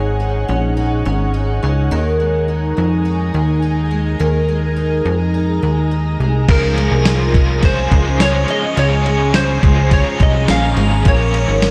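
Set in a straight 4/4 at 105 BPM, this dream pop excerpt in Db major feels floating and blissful. From the start, an ethereal, airy pad holds sustained chords through ensemble chorus, reverb and phaser, while a picked twelve-string acoustic guitar, octave-doubled and shimmering, spins arpeggios through analog chorus and delay. Underneath, a punchy, plucky analog bass with a fast, decaying filter pluck sits up front over the opening Ab7sus4 and Ebsus4 chords. At 6.5 seconds the harmony moves to Db and the texture fills out: a dreamy, warbling FM bell carries the melody with a long release, a double-tracked, overdriven electric guitar adds tremolo-laced accompaniment, and a gritty, compressed sampler-style drum kit enters with a thumpy kick, medium-tuned snare, ride, crash and tambourine, re-recorded in a large room. The production is dark with light digital ambience, and the chords settle on Bbm at 11.1 seconds before the cut.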